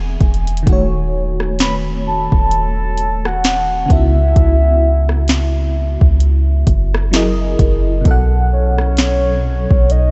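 A slow 65 BPM groove in 4/4 with a swung sixteenth-note feel drives this late-night, moody contemporary R&B excerpt in C# minor, cut from a longer piece. The smooth electronic drum kit comes in at 0.2 seconds with a soft kick, sharp snare, rim click and hats, given an overdriven edge and a small-room character that keeps it up front. Beneath it, a deep, round 808-style bass with a sine tone and decaying notes sits prominently from the start. A mellow FM electric piano with tremolo, a faint noise layer and a phaser carries the chords, moving from E through D#m7b5 and C#m7 to F#13 and B5. At 1.6 seconds a full, dark synth lead enters, layering a triangle tone over a sine sub octave, with sustained notes colored by chorus, phaser, vibrato and tape echo. The overall sound is soft and dim at the top, with light reverb.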